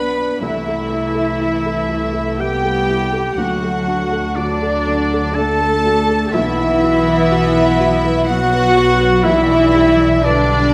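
Bittersweet and moving, this cinematic film-score passage for orchestra unfolds in a rubato three-four lilt, its clear, floating violin section carrying the melody in a sul tasto hush. A bright solo oboe, a very quiet hollow flute group, a distant clarinet and a warm second violin section trace supporting lines, while a dark viola section and a felt-muted upright piano, its action noise audible in the background, accompany over mellow French horn chords. Cello and double bass sections anchor the bass as the harmony moves from Am/C through D and Bsus4 to G/B, bathed in the wet reverb of a scoring stage.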